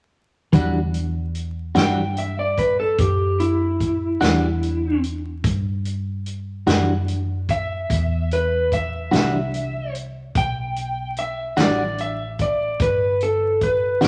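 A slightly broken-up electric slide guitar, played with fingerpicks and sitting up front, carries the solo from 1.8 s in this brooding, smoky slow blues excerpt in E minor, moving at 49 BPM in a straight 12/8 over a single Em9 chord. Beneath it, a clean, picked electric guitar shimmers with harmonic tremolo, a dark, foam-muted fingered bass adds a round, punchy low end, and a natural country drum kit keeps time on hi-hat, punchy kick and medium-tuned snare. A large, wet studio reverb and a layer of vinyl crackle give the sound a dusky, aged character.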